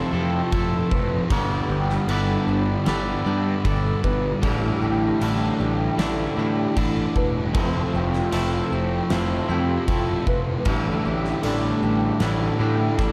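A straight 4/4 pulse at 77 BPM carries this 13.1-second slice of dreamy, wistful shoegaze and dream pop, cut from a longer piece. A huge arena drum kit arrives at 0.5 s with a punchy kick, a fat snare and bright crash cymbals in an airy, polished big-room sound. Up front, a clean, twangy electric guitar picks a riff bathed in reverse reverb, while a fuzz-driven picked bass anchors the low end with overdrive. Behind them sit a thick, distorted fuzz guitar riff under analog chorus, a bright, double-tracked overdriven semi-hollow guitar through a phaser, and a fingerpicked twelve-string acoustic playing shimmering, boxy, octave-doubled arpeggios with ensemble chorus and analog delay. The harmony drifts through Fmaj7, G6 and A7sus4 within a dark, warm production with light reverb and studio ambience.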